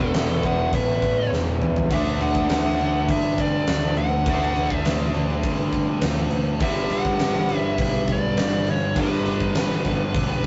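A huge, up-front arena drum kit with a punchy kick, fat snare and bright cymbals drives this powerful, energetic hard rock excerpt at 102 BPM in a straight 4/4, throwing in a drum fill at 1.3 seconds. A bright, hollow-body semi-hollow guitar with spring reverb sits loudest among the riffing guitars, above a very quiet cranked stack guitar and a faint double-tracked overdriven guitar, while a fuzzed, punchy picked bass digs in underneath and a dark, smooth overdriven lead guitar carries the melody. The chords move from E5 to D at 1.9 seconds and G at 6.6 seconds, tuned to A4 = 444 Hz, in a rough rehearsal-room sound with moderate reverb, saturation and a dulled top end.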